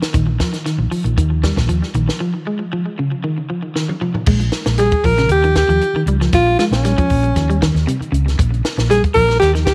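Driving and intense, this afrobeat excerpt at 117 BPM in Bb dorian sets a slightly broken-up, twangy electric guitar playing picked arpeggios through tape echo over a round, hollow-body fingered bass and a dry cocktail drum kit with a punchy kick, high-tuned snare and dark cymbals, pausing for a break at 2.2 seconds with a drum fill before a clear, close-miked alto saxophone enters at 4.8 seconds to carry the melody with vibrato and scooped notes under light reverb.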